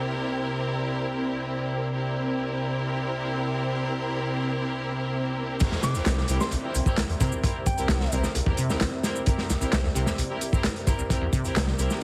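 A dark analog pad holds sustained C7 chords beneath clear, lush string stabs touched with dub echo, opening this swaggering, gritty breakbeat cut from a longer piece at 131 BPM in a straight 4/4. The pad is deep and moody, detuned and full-bodied with a slow attack, chorus, vintage 12-bit sampler grit and sidechain pumping, while the bowed ensemble sits up front with vibrato and a smooth top. A very quiet electronic swell and downlifter rises at 4.9 seconds into a drop at 5.6 seconds, where a crunchy breakbeat kit arrives with a tight kick, medium-tuned snare and dark cymbals, saturated and rolled-off, joined by tape-tinged analog shaker and handclaps. Two basses anchor the drop: a rumbling detuned saw bass held on C2 up front, and a rubbery acid riff with a resonant filter pluck and lush chorus tucked in the background. Briefly, a soft FM bell melody floats high above, mellow and pure, colored by phaser, telephone filtering and dub echo. 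The whole mix carries light reverb, heavy radio-style compression and a layer of vinyl crackle.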